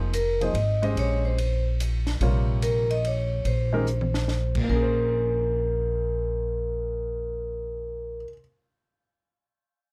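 Modal jazz excerpt in Bb dorian with a searching, spiritual mood, swinging in 3/4 at 145 BPM, where a ringing, metallic vibraphone played motor off with medium hard mallets carries the melody over a Bbm9 chord from an intimate baby grand piano with audible action noise and a woody, thumpy pizzicato upright bass, while a dark, smooth compact cocktail kit with a high-tuned snare and punchy kick plays a fill at 3.9 seconds before dropping out at 4.6 seconds, all captured dry by close, detailed microphones.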